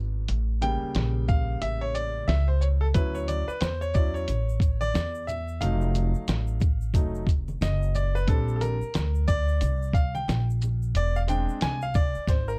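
Mellow and cool, this jazz-hop excerpt rides a swung groove with a dark, dry production. A clear concert grand piano with a smooth, vintage tone carries the piece as a solo voice across the full span, moving through lush jazz chords such as A7b9, Dmaj9 and E7alt. Beneath it, a woody, plucked upright bass sits up front, its steel strings giving the low end an acoustic weight. The lo-fi sampler-style drum kit is muffled and pitched down, with a thumpy kick, fat snare, hi-hat and shaker; the kick drops out briefly before returning at 3.0 seconds, and a short drum fill closes things at 12.3 seconds. From 3.0 seconds, an egg shaker and congas played with hard hands add a saturated, compressed texture from the background.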